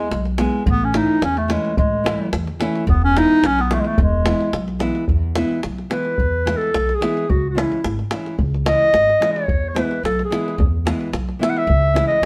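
A clear, classical-style clarinet leads up front in this exuberant, wild Balkan wedding-band cut in 2/4, taking a solo from 5.1 seconds over fingerpicked nylon-string guitar, thumpy pizzicato upright bass with woody gut strings, and a tight, close, dry davul, all played live together in one room with moderate studio reverb.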